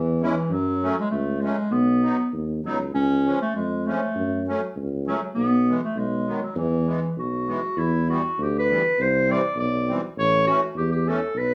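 The rhythm is a straight 2/4 pulse at 100 BPM, giving this alpine folk dance-band excerpt a bouncy, festive lift. A clarinet carries the melody from E3 to D5 with a classical touch, its tone sounding distant and roomy even while sitting up front. Beneath it, a tuba holds down the bass between A1 and F#2, warm and present in a classical manner, while a musette accordion fills in the accompaniment with a reedy, shimmering sound from 0.2 s. The first stretch moves through chords like C#m, F#m, B and C# before settling onto E, and at 7.8 s the music turns to E minor, passing through Em, C and A. A moderate studio reverb lends the trio a snug sense of space, and the passage is cut from a longer piece, ending at 11.5 s.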